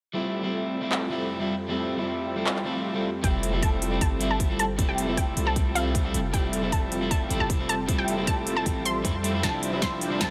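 A smooth, detuned supersaw riff with cassette-tape colour and sidechain pumping leads this bright, playful future bass excerpt at 155 BPM in half-time F major, alongside a slightly broken-up picked electric guitar with dub echo, soon joined by a shimmering, ethereal ambient pad under a filter sweep and a layered dance kit of punchy snare, crisp hats and handclaps, until a faint swell at 2.6 s gives way at 3.2 s to a build-up where a lush, bright unison pluck melody, a deep, boomy 808-style bass and a hard-clipped electronic kick arrive, closing with a drum fill and riser from 9.4 s as the harmony moves from Fmaj9 to Dm11/F.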